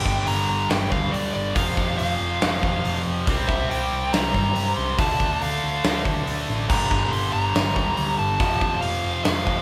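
Aggressive and driving, this hard rock excerpt in G minor charges along at 140 BPM in a straight 4/4, with a dark, picked overdriven lead guitar carrying the melody over a bright, double-tracked high-gain guitar riff, a round hollow-body bass entering at 0.1 seconds, and an up-front drum kit with a punchy kick and bright cymbals, all captured as a band playing live in one large room with moderate reverb while the chords move from G5 through F5, C5, Dm and Gm to F.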